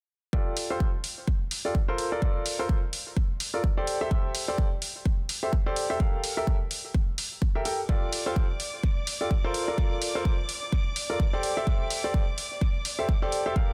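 Piano house at 127 BPM in F major, joyful and uplifting, with a swung 16th-note feel in 4/4, cut from a longer piece. A clear upright piano carries the riff from 0.3 seconds, woody and intimate with audible action noise, set up front and roughened by vintage 12-bit sampler grit, sidechain pumping, a low-pass filter and tape echo. A punchy electronic kick and bright hi-hats, both layered and up front with studio reverb, drive the groove, the hats coming in at 0.6 seconds. At 7.9 seconds a muted violin section joins with sustained chords, veiled and dark, bowed con sordino with vibrato, a soft attack and its own sampler grit and pumping. The harmony moves through F6/9, Am7 and Gm9, all in a small room ambience with a dense, heavily limited modern master.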